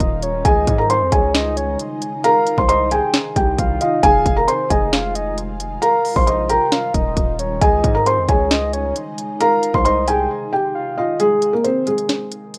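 A rough home-demo mix with moderate studio reverb frames this brooding, hard-hitting trap excerpt at 134 BPM in a half-time feel, cycling through chords such as Dbsus2, Cm, Fm and Ebadd9. A felt-muted upright piano carries the melody up front, soft and intimate with audible action noise and delay, while a round, octave-layered synth lead with chorus and vibrato adds a second line over an ethereal, detuned pad with a slow attack and long release. A distorted, saturated 808-style bass hits heavy under an electronic kit with a hard-clipped kick, sharp snare, crisp hats and vintage 12-bit sampler grit; the bass drops out at 10.3 s for a brief break, and from 11.2 s the kick is muted as piano and drums carry on over an Ab chord.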